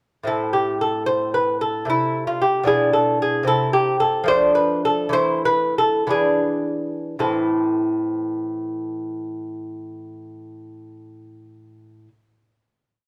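A solo lute, bright and delicate on nylon double strings with some octave-doubled courses, carries this short, solemn baroque-style dance in a flowing, rubato 6/8, fingerpicked up front and moving between a single-line melody and hymn-like chordal writing. The pace slows from 2.7 to 7.2 seconds, where a final A minor chord rings out until 11.6 seconds. Close, detailed miking with light reverb captures the instrument's intimate detail in this complete piece.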